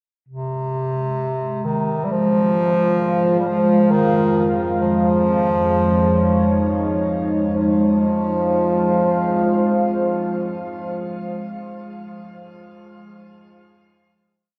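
Free of any steady pulse, this short dark ambient drone piece drifts in open time in F minor, with a cavernous, brooding mood. A clear, distant-sounding bass clarinet enters at 0.3 s with a solo, classical-style melody built from call-like motifs, ranging from C3 to G3, trailed by shimmer reverb and a diffuse ambient delay. At 1.5 s a deep, moody pad arrives with a slow attack, layering detuned sawtooth, sine and triangle waves with a sub octave, wave-folding and ring modulation, and it is thickened by chorus and shimmer reverb as it holds sustained chords from F2 to F5. The harmony moves slowly from F minor to D-flat add nine over F, then settles on a final F minor chord at 7.5 s, where the pad's long release lets the sound hang. Both parts sit up front within a cathedral-sized reverb whose roughly 5.8-second tail gives the whole piece a vast, shadowy space.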